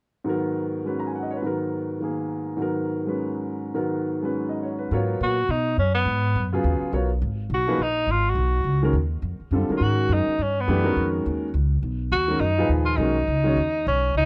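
This is a dry, close recording in a 1970s studio style, with a touch of studio reverb and every instrument placed up front. The excerpt, cut from a longer piece, is cool, spiritual modal jazz in G# Dorian, swinging briskly at 208 BPM in 4/4. The polished upright piano opens alone, comping on a G#m9 chord with long sustain. A dark, thumpy, gut-strung upright bass enters at 4.9 seconds with low pizzicato lines. The clear tenor saxophone takes the solo melody from 5.2 seconds, with vintage jazz phrasing, vibrato and scooped notes in a compact middle register, while the harmony shifts to B at 9.5 seconds.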